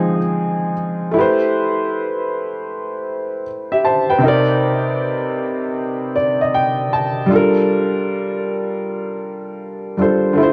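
A slow hip hop groove at 78 BPM in 4/4 sways with a 65% swing on the sixteenths, setting a melancholic, reflective tone in A phrygian with the tuning pitched at A4 = 436 Hz. The only voice is an upright piano, playing alone across the full 10.5 seconds of this fragment cut from a longer piece and ranging from C3 to A5. Its sound is intimate and woody, with audible action noise, long sustain and an up-front placement, colored by cassette tape character and an analog delay. The harmony opens on Fm7, moves to Am9 at 1.2 seconds, shifts to Cm9 at 4.2 seconds and lands on Gm9, with a piano fill running between 5.8 and 7.3 seconds. A moderate studio reverb gives the instrument a natural sense of space around it.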